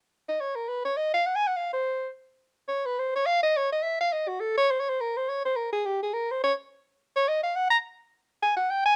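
Jazz with a playful, relaxed mood, this short excerpt moves at a brisk 210 BPM in 4/4 with a swung eighth-note feel. A lone soprano saxophone carries the whole passage as a solo, entering at 0.3 seconds and playing through to the 9.0-second mark. Its tone is warm with a smooth top, touched by a light vibrato, and it sits up front in the mix. The line ranges from Gb4 up to Bb5, phrased in an idiomatic jazz style. A light reverb gives the sound a gentle sense of space, and the tuning rests slightly below standard pitch at A4 = 439 Hz.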